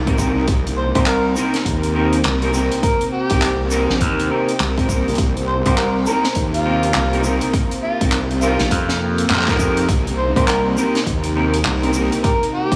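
Glitch hop at 102 BPM with a swung, playful and swaggering feel in C minor pentatonic, resting on a Cm7 chord through this 12.8-second cut from a longer piece. A heavy, saturated wobble bass sits up front alongside a punchy, layered electronic kick and a studio kit of snare, hi-hat, shaker and handclaps, while a gritty, overdriven slap bass enters at 1.0 s and drops out at 10.8 s. Above them a dark, clean electric guitar plays stabs with chorus, pumping and diffuse delay, a smooth sawtooth pad holds sustained chords in the background, and an amplified harmonica solo from 0.8 s brings jazz-style scooped notes, tongue slaps and light vibrato, all steeped in a dreamy, reverb-soaked mix.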